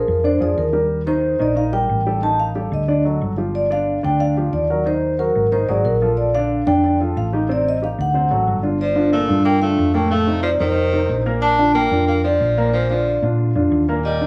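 A mellow, ringing vibraphone played with soft mallets carries the melody through a plate reverb from the start, over a dark, intimate grand piano with audible action noise and a round, amped hollow-body electric bass sitting up front. At 8.8 seconds a bright tenor saxophone enters with a second line, its soft attack and vibrato adding a present jazz voice. The mood is lively and sophisticated, with the harmony moving through rich extended chords in a moderate club-like room, in what is clearly a section cut from a longer piece.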